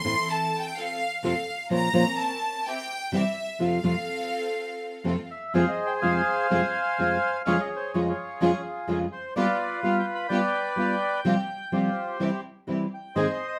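In a rubato 4/4 feel, this melancholic, tense tango fragment opens with an earthy, close violin section carrying a high second line over fingerpicked, full-bodied nylon-string guitar (finger squeak audible) and distant, biting stabs from a bright symphonic string section, until the violins stop at 5.3 seconds and a reedy, dark bandoneon takes the melody up front as the harmony turns to minor, all under light reverb.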